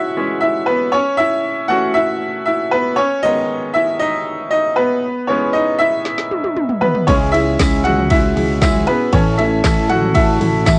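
A brilliant, open upright piano leads this earnest, dramatic piano-driven pop excerpt, sitting up front with plate reverb and cassette-tape coloring over a C#m, A, G#m, E progression in moderate booth ambience, the whole home recording rolled off at the top. At 6.1 seconds an electronic, layered deep house kit enters with a fill, its deep kick, woody snare, handclaps, ride and toms placed up front. At 7.1 seconds a full-bodied, fingerpicked jumbo acoustic guitar riff and a direct, picked electric bass join, and a jingly vintage tambourine sits in the background from 7.6 seconds.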